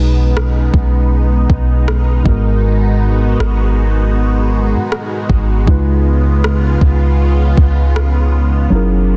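A dense, heavily limited modern master sits in a digital ambience, giving this short cut from a longer contemporary R&B piece a close, polished sheen. The mood is longing and moody, with a lightly swung sixteenth-note feel in 4/4 moving through B6, G#m7 and C#7. Muted, felt-like synth keys carry the accompaniment with an intimate, dark tone, their triangle, sawtooth and sine layers, wave-folding and a breath of noise treated with chorus. Alongside them, a lush unison pad holds sustained chords, its thick, detuned sawtooth and square voices with a sub octave sounding bright through chorus, phaser and sidechain pumping. A soft 808-style bass sits up front, deep and round with a fast attack and decaying tail. An electronic, produced drum kit of soft kick and rim click enters at 0.4 seconds and drops out at 8.1 seconds, its overdrive adding grit to the otherwise smooth groove.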